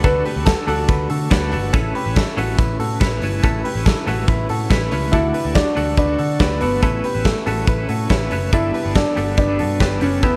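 A breezy, youthful stretch of jangly indie pop in D major at 141 BPM opens with a punchy, up-front rock drum kit in a stone room, a round, foam-muted picked bass, a bright twelve-string electric guitar with tremolo, and a twangy, direct-recorded clean guitar playing arpeggios through subtle chorus and slapback echo. A woody, intimate upright piano with audible action noise carries the melody briefly before dropping out at 1.3 seconds. The piano returns at 5.1 seconds as the chords move from D and Aadd9 to Gadd9, all under a light reverb.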